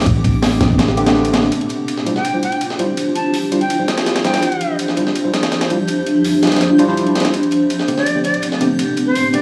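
This nostalgic, frenetic drum and bass and jungle cut opens on a gritty, thumpy sampler-style breakbeat kit, a dreamy reversed swelling texture in the background and a deep, boomy 808-style bass that stops at 1.5 s. They are joined by a very quiet, dark crunchy breakbeat kit, an up-front granular cloud pad holding blurred sustained chords, and barky tine electric piano stabs with dub echo. A bright, reedy jazz flute with vibrato carries the melody from 2.2 to 4.8 s and again from 8.0 s, all over a dry hardware recording with vinyl crackle and plate reverb.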